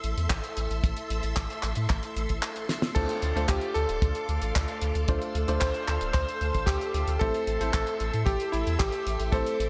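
Bittersweet and danceable, this italo disco excerpt moves at 113 BPM in a straight 4/4 in D minor, cut from a longer piece. A lush string machine ensemble holds sustained chords with a chorused shimmer, while a round, deep analog bass sits up front with a dark, sine-like body and a filter sweep. A dry, tight kick and a damped 70s kit with a fat snare, handclaps, hi-hat and crash carry the groove in a small room with gated reverb, and a drum fill lands at 2.7 seconds. From about 2.9 seconds a cutting electric grand piano takes the melody with vintage 12-bit grit and digital delay, joined at 3.0 seconds by brilliant, worn grand piano stabs, also echoed by delay. The harmony moves from Am to Dm7 and back to Am at 7.2 seconds, all within a light, intimate room sound.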